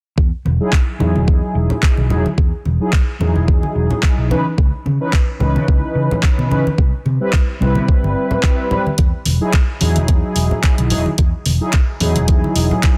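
A dense, heavily limited modern master with light reverb and digital ambience frames this feel-good, groovy nu-disco excerpt at 109 BPM in 4/4, with a gentle swing on the sixteenths in E major. A thumpy, sampler-style electronic kick sits up front from 0.2 seconds, joined by a punchy, amped fingered electric bass and bright, damped, low-tuned congas with a saturated edge. Mellow synth brass carries the accompaniment from 0.6 seconds. Its round, detuned sawtooth tone is sustained and dark, shaped by a filter sweep, vibrato, chorus, analog delay and sidechain pumping. A layered, tape-tinged house drum kit adds handclaps and hi-hat from 0.7 seconds, sitting lower in the mix. The harmony moves from Emaj9 through C#m9 and Cmaj7 before returning to Emaj9.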